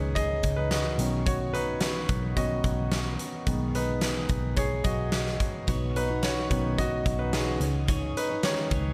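Light reverb surrounds a clear, intimate grand piano, set up front with its action noise audible as it carries this uplifting, anthemic piano-driven pop passage, cut from a longer piece. The piano takes the lead throughout, moving through C#sus2, Badd9 and G#m/B before returning to C#sus2. A huge arena drum kit arrives at 0.2 seconds with a punchy kick, fat snare and hi-hat in a natural big-room sound. A vintage muted picked electric bass adds a dark, round, foam-muted low end. A glassy, ethereal glass harmonica holds slow-attack chords in the background. At 5.7 seconds a bright, full-bodied fingerpicked steel-string acoustic guitar slips in behind them with a riff.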